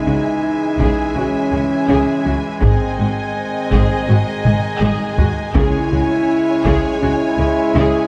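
An epic, relentless stretch of cinematic orchestral film score opens at a steady 82 BPM in C# harmonic minor, with violins holding a high G#5 melody over a lush second violin line, distant vibrato violas, clear background cellos and woody double basses, while the mellow French horns sit prominently among sustained chords from a very quiet trombone section and a chiffy oboe-stop pipe organ. Hard-mallet timpani strike at the start and again at 5.6 seconds, and a close, dry taiko ensemble drives from 0.8 seconds, playing a fill between 4.5 and 5.6 seconds as the harmony moves from C#m to G# and back. The concert hall reverb and dark production give the whole a heavy, brooding weight.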